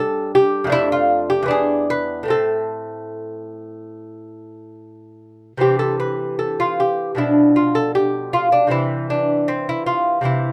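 A solo lute opens this short, fingerpicked piece in a baroque-style dance, its bright, delicate tone sitting up front in a light reverb. Nylon and double strings, some doubled at the octave, give each note a paired ring across a range from low E2 up to B4. The playing moves in a gentle four-beat pulse with a flexible rubato, so the dance feel breathes rather than marches. The opening phrase passes through A7 over G, D minor over F and E7 before landing on A minor, and a second phrase from 5.6 s shifts to C major, moving from C through a half-diminished B chord and back to C. The clip ends at 10.5 s, cut from a longer performance.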